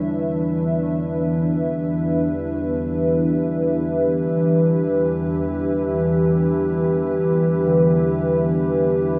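A deep, moody, wave-folded analog pad holds a sustained Em7 chord with chorus up front in this ominous, desolate dark ambient drone, set in free time in E minor and cut from a longer piece. Lower down, a calm organ-like drone of detuned sine and triangle tones sits just as close, shaded by ring modulation, a moving notch and ensemble chorus. A very quiet, airy gamelan-type bronze metallophone plays arpeggios, and a soft bronze singing bowl rings on D5 with slow beating, all through a dreamy mix soaked in a huge reverb with a 7.7-second tail across the full 9.2 seconds.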